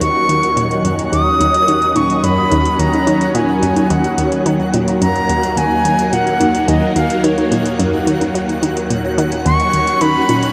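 A huge, wet ambient reverb bathes this expansive, cosmic excerpt of sequencer-driven space music in Eb minor at 108 BPM, where an airy, reedy concert flute carries the melody with vibrato over swirling, phased string-machine chords and a round, nasal analog pluck riff with tape echo, while electronic hi-hat and bongos with metallic hats tick beneath and a twinkling granular texture sparkles in the background on a single Ebm7 chord.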